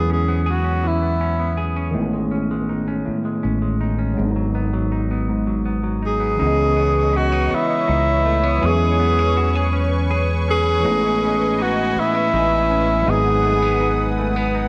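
Set in a moderate echo-chamber reverb, this sultry, yearning slow R&B passage in six-eight, cut from a longer piece, rests on a dark, round fingered electric bass with tube saturation sitting up front, a clean, compressed semi-hollow guitar carrying a second line, and a gritty, overdriven tine electric piano with ensemble chorus. A breathy, whispered tenor saxophone with vibrato and scooped notes states a brief phrase at the opening, then returns at 6.1 seconds for an intimate, jazz-style solo with slapback echo. At 6.4 seconds a lush, detuned sawtooth unison pad with chorus arrives to sustain the chords through to the end.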